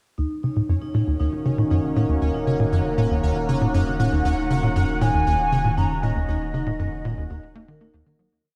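A dark, plate-reverberated production gives this short piece of ambient, sequencer-driven space music a mysterious, cosmic atmosphere in a straight 4/4 feel. Up front, a tight, punchy sequencer bass drives an eight-step sawtooth-and-square riff with a plucked filter, touched by subtle chorus and tape echo. Beneath it, a round, wave-folded analog bass holds the deep root, fading in under a filter sweep. In the background, a metallic vibraphone rings out a three-step arpeggio loop that drifts against the bar, while a pulsing, tempo-synced gated texture holds a bright high note through chorus and reverb. At 1.0 s an evolving wavetable pad enters with slowly shifting, detuned, warbling chords under a phaser, and at 4.3 s a distant, hollow silver concert flute brings an arch-shaped motif with vibrato and tape echo before the piece fades out from 5.6 s.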